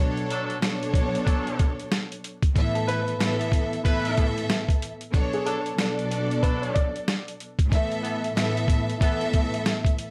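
Swung sixteenths drive this confident, warm boom-bap hip-hop excerpt, where a gritty, compressed, pitched-down sampler drum kit with a thumpy kick and medium-tuned snare sits up front beside a lush, woody bowed string section; punchy vintage horn stabs ring with slapback echo, and an upright piano with long sustain carries a brief slapback-echoed melody from 2.8 to 7.2 seconds, set in light reverb over a bed of vinyl crackle.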